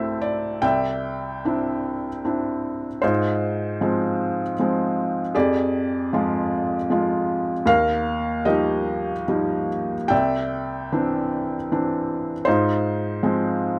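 A felt-muted upright piano plays alone throughout this short classical excerpt, its soft, mellow tone sitting up front with the thin felt and audible action noise giving it an intimate, close-up quality. The mood is calm and tender, and the lyrical line moves in a gentle three-beat metre with uneven, rubato timing that lets each phrase breathe. After a brief opening fill that ends at 0.6 seconds, the piece settles into a lyrical section built on soft, open harmonies, moving from Cadd9 through Ab6, Fmadd9 and Ebadd9 before returning to Cadd9 and Ab6. The playing spans a broad register, from low C2 up to A5. Recorded with close, detailed microphones and little reverb, the sound feels dry and personal, and the passage is cut from a longer piece.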